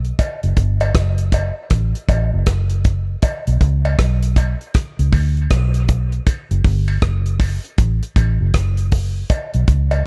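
A dry studio sound puts a damped 70s drum kit and a vintage muted fingered electric bass up front in this spacious, heavy dub reggae excerpt, which moves with a swung sixteenth-note feel. The bass is dark, round and foam-muted, holding the low end alongside tight kick, hi-hat and rim click from a kit with a rolled-off top, while a filter sweep runs across the drums from 0.2 to 9.3 seconds. From 0.2 seconds, a distant cowbell sits back in a large room, high-pass filtered and trailed by dub echo.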